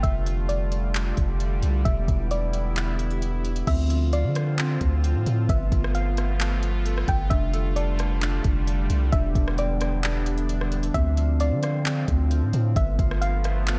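A dark, dry production opens this melancholic, spacious excerpt of atmospheric cloud-rap at 132 BPM in a half-time feel in D dorian, where a deep sine 808-style bass and an up-front, tape-warm R&B drum kit of soft kick, smooth hats, handclaps, rim click and crash sit under a bright, evolving sawtooth pad with chorus and sidechain pumping, a soft, round pluck melody with chorus, filter and delay, and a very quiet breathy wind-like texture, while a clean, fingered electric guitar joins at 3.7 seconds with background arpeggios through low-pass filter and delay over chords cycling F69, Em7, Dm9 and G13.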